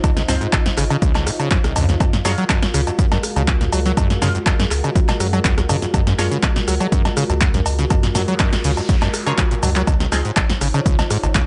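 Through a digital ambience with a dulled top end, this playful, trippy acid house excerpt at 122 BPM drives an overdriven, punchy kick and an up-front analog drum machine of snare, handclaps, hi-hat, rim click, shaker, cowbell and toms under a squelchy, resonant saw acid bass riff with tube saturation and tape echo, a round sine sub bass, a moody, detuned pad pumping on Dbmaj9 and Gbmaj9, muted dub chord stabs with phaser and lush chorus from 0.3 to 10.3 seconds, and a very quiet noise sweep from 8.3 seconds that overlaps a drum fill starting at 9.4 seconds.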